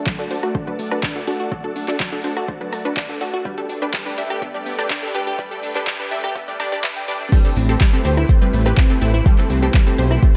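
An overdriven, deep electronic kick sits up front in this dreamy, driving progressive house excerpt at 124 BPM in A dorian, joined by a background supersaw pad of sustained chords, punchy unison pluck stabs and glassy, crystalline wavetable arpeggios with chorus and delay, all three pads and plucks pumping with sidechain and sweeping through a filtered build-up over D and G alongside a house kit of claps, rim clicks, hi-hats, shaker and crash, until the drop at 7.3 seconds lands on Am7 and a fat, tube-saturated sawtooth bass enters at 7.6 seconds in a dark, lightly reverberant mix.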